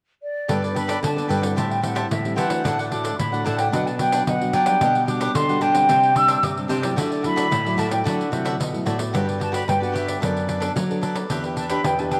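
An airy, distant concert flute opens this playful, sunny samba-choro fragment with expressive, tongued, vibrato-laden lines, joined at 0.5 s by crisp picked cavaquinho, a fingerpicked classical nylon-string guitar, a dark, full-bodied thumb-plucked nylon-string bass guitar and a close, jingly hand-struck pandeiro, all set in a wet plate reverb.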